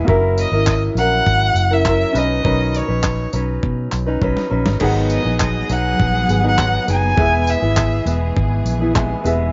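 A rich, smooth violin carries the melody up front from 0.4 seconds, a single bowed player with steady vibrato who nonetheless sounds slightly distant. It sits on a tender, wistful acoustic pop excerpt in G# minor at 101 BPM in a straight 4/4, moving through F#7, Badd9, G#m7 and E. Fingerpicked acoustic archtop guitar sits close, with audible finger squeak, while a woody, slightly detuned upright piano stays boxy in the background and closes the clip with a fill at 8.7 seconds. A dark, round, foam-muted electric bass comes through amped and punchy, and a gritty, compressed sampler-style soul kit adds a thumpy kick, medium-tuned snare, handclaps, tambourine and crash, its overdrive lending grit, with a drum fill at the midpoint. From 4.8 seconds a veiled, con sordino studio string section adds lush sustained chords with a soft attack behind everything, and the dry mix keeps a dusty, rolled-off top end.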